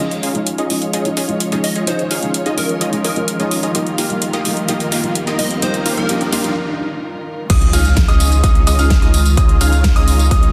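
Festival progressive house, anthemic and triumphant, cut from a longer piece, where a muffled felt-muted upright piano, dark sul tasto strings and a detuned supersaw stab with a filter sweep, dub echo and sidechain pumping build over big-room drums with a huge snare and metallic hats, a background riser and a catchy plucky unison lead with lush chorus, until a break at 6.6 s gives way to a drop at 7.5 s, where a punchy electronic kick, a thick saturated sub bass and brilliant high grand-piano arpeggios arrive with an impact, all in a dense, heavily limited modern master with light digital reverb.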